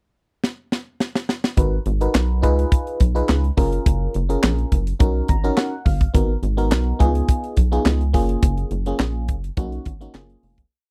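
A dry, close studio sound frames this slick, danceable early-eighties boogie funk at 105 BPM, opening with a drum fill at 0.4 seconds on a tight kit whose high-tuned snare is layered with handclaps over a tight kick and hi-hat. At 1.6 seconds a fat, rubbery square-wave bass enters up front with a syncopated line full of slides and chromatic approach notes, while a glassy, bell-like FM electric piano with chorus pushes rootless chords and adds a short fill. The verse cycles through G#m9, C#9, F#maj9 and Bmaj7 before fading out from 8.4 seconds to settle on F#maj7.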